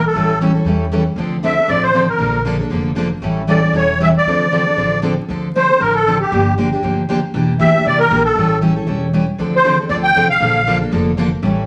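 A reedy, shimmering musette accordion carries the melody up front in this fiery, bittersweet excerpt of acoustic string swing (jazz manouche), racing at 234 BPM in D minor with a swung feel. Two picked steel-string acoustic guitars supply the accompaniment. One is a full-bodied jumbo sitting up front that drops out at 5.1 seconds and returns at 9.4 seconds, while the other has audible finger squeak on fresh strings. A woody, thumpy pizzicato upright bass on gut strings underpins them. The chords move through A7, Dm7, Bbmaj7, Gm7 and Em7b5, set in a wet studio reverb with a layer of vinyl crackle.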